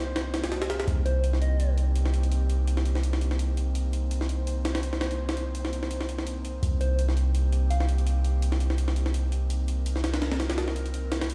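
A long, deep 808-style bass sits up front from the very start, its sine tone saturated through tubes, while an airy, breathy pad holds a single Cm7 chord beneath a soft chorus shimmer. This dark, nostalgic drum and bass cut, lifted from a longer jungle piece, has a lightly swung sixteenth-note feel. At 0.2 seconds a gritty, sampler-style jungle kit comes in, with compressed, pitched-up hi-hats and a high-tuned snare both thinned by high-pass filtering. A round, keys-like FM lead, vintage and warbling, surfaces only briefly in the background, at 1.1 seconds and again at 6.8 seconds, its chorus and dub echo trailing behind it. The whole track sounds as if played on a big sound system in a bare stone room, with stone room reverb hanging in the air.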